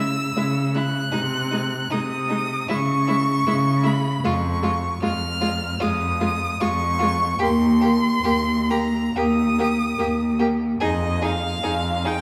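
Classical slow romantic movement for string quartet, a serene and warm passage cut from a longer piece, moving in a rubato 4/4 at 62-78 BPM with harmony that opens on C#m. The first violin carries the melody high above the ensemble with a focused, vibrato-laden bowed tone, and the second violin's smooth, even line and the viola's rich accompaniment sit beneath it. The cello's bass stands up front alongside the melody, and the whole quartet is heard from further back in a lush scoring-stage reverb.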